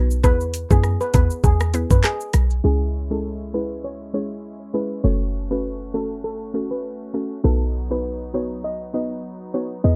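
An up-front electronic island pop drum kit, with a knocking kick, metallic hats, handclaps, rim click and shaker, drives this sultry, bouncy dancehall excerpt at 100 BPM in C# minor, playing only until 2.6 seconds alongside background woodblock and cabasa that add close, dry maracas and group handclaps. Underneath, a punchy, tight 808-style bass and a woody, round mallet-like synth pluck with chorus run throughout, while a soft-stick steel pan carries a mellow, shimmering, vintage-toned melody over chords moving from E to C#m, F#m and B. From 2.6 seconds a quiet pipe organ and strings celeste hold romantically voiced chords that pump against the beat under a filter sweep, and a barely audible riser appears at 9.8 seconds, all within a dark, dry production.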